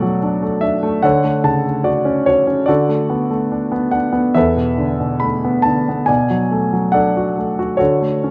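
The recording has a dark, warm production with light reverb, and the solo grand piano sits up front, clear and polished, with its mechanical action audible close to the ear. This is a short cut of lyrical classical piano in B dorian, moving at 72 BPM in 4/4 with a flexible, rubato feel that gives it a wistful, brooding mood. The piano is the only voice from 0.0 to 8.3 seconds, ranging from E2 up to B5. Its harmony drifts from Bm7 to Dmaj7, settles on Bm7 over D, and lingers on an E7sus4 around 4.4 seconds before returning to Bm7 and closing on Dmaj7 at 7.8 seconds.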